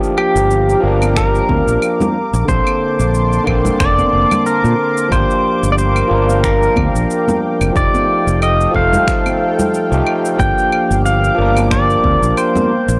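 A swung 91 BPM groove in 4/4 is set by a punchy, layered electronic kick drum, electronic cabasa, claves and finger snaps, with ringing congas tucked in the background, while a round, dark fretless electric bass sits up front from 0.4 seconds. In this smooth, sunset chillout passage in G minor, a barky, overdriven tine electric piano through a combo amp and a thick, detuned sawtooth unison pad with slow attack and chorus carry chords moving from Gm7 through Bbmaj9 and F9. The melody comes from a twangy, clean pedal steel guitar, played with fingerpicks, slide and volume swells and fed through analog delay, all inside a dry, gritty recording with transformer saturation and cassette tape character.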